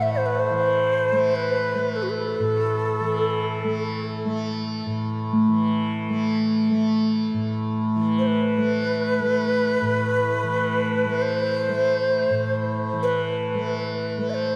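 A breathy cedar flute with vibrato sings an expressive, up-front melody through shimmer reverb and delay over a bright, buzzing tanpura drone in A minor, while a mellow, metallic bronze singing bowl joins at 5.3 s with slow beating rings, giving this haunting, spacious free-time world meditation excerpt, tuned to A4 = 438 Hz, a dreamy character soaked in lush hall reverb.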